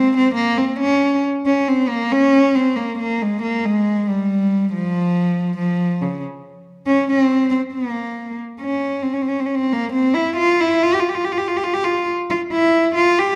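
A lone bowed cello sits up front and close, its airy sul tasto tone, soft attack and light vibrato giving this Balkan folk excerpt a bittersweet, restless character at 138 BPM in a lightly swung 2/4, in B-flat Dorian with a raised fourth. The cello plays throughout, ranging from Db3 to G4, and moves into its solo passage at 1.2 seconds, carrying it through to 13.4 seconds. A wet recital hall reverb and a dark, warm production surround the intimate single player.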